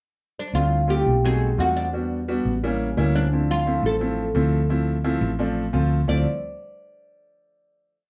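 An oud opens the piece with a brief pickup at 0.4 s, its plectrum-plucked double strings sounding woody and deep, with a slapback echo trailing each note. This is a short, driving, fiery jazz piece in D minor at 173 BPM in a straight 4/4. A hollow-body electric bass enters at 0.5 s with a round, punchy tone, playing a tumbao line that anticipates the chords. A vintage concert grand piano follows at 0.6 s, supplying smooth, syncopated stabs in rootless voicings. Over a single pass through Dm9, B7b9, Em7 and A7b9 back to Dm9, the oud spins motif-based call phrases. The parts share a small, reverberant room heard from further back, and the piece closes on a final chord from 6.1 s.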